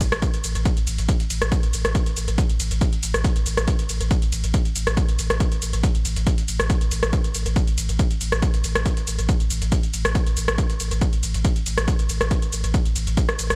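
A straight 4/4 groove drives this dark, intense slice of peak-time techno, cut from a longer track, with a punchy, layered electronic kick sitting up front from the opening second. Metallic hi-hats, ride cymbal, rim clicks and shaker from a techno drum kit pump against the sidechain and trail analog delay, while a deep, round sine sub bass, thickened by tube saturation and softened by a low-pass filter, pumps underneath. Both drum parts carry the close sound of a small room, and light reverb and heavy echo colour the mix.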